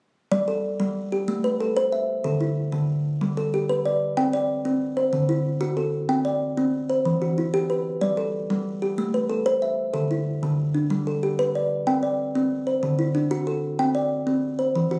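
A woody, thumb-plucked kalimba sits close and up front, spinning short, full-bodied arpeggios from 0.3 to 15.0 seconds in a hypnotic, rippling southern African traditional piece in a straight 12/8. Its patterns circle through G, Am, D, C and Em chords. The sound is a phone recording of a moderate recital-hall space with added club reverb and compression, its top end dulled, and the passage is cut from a longer piece.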